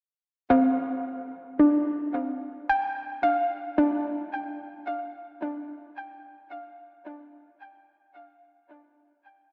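A lush hall reverb, with a tail of about 2.8 seconds, soaks this dreamy mix and lends it a floating, spacious glow. This short excerpt is a peaceful ambient piece at a slow 55 BPM in a straight 4/4, resting on a G5 chord from the opening moment. A single soft, round pluck carries the music from 0.5 to 7.0 seconds. It moves between C4 and G5, sitting up front with a dark, gentle tone. Its sound blends triangle, sine and sawtooth layers with a touch of noise and a filter sweep, and each note has a fast attack that then decays. Subtle chorus and delay on the pluck add a shimmering, echoing halo to its otherwise calm, unhurried line.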